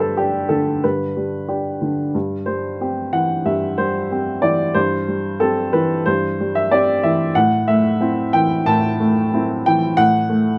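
Tender and hopeful, this short neoclassical minimalist fragment features a solo upright piano at 92 BPM in 4/4, played with a rubato feel and tuned to A4 = 439 Hz. The piano sounds warm, woody and polished, sitting up front in a moderate studio reverb, and spans G2 to A5 across about 10.6 seconds. The harmony moves from G to C/G at 2.1 seconds and settles on Am at 7.3 seconds before the cut.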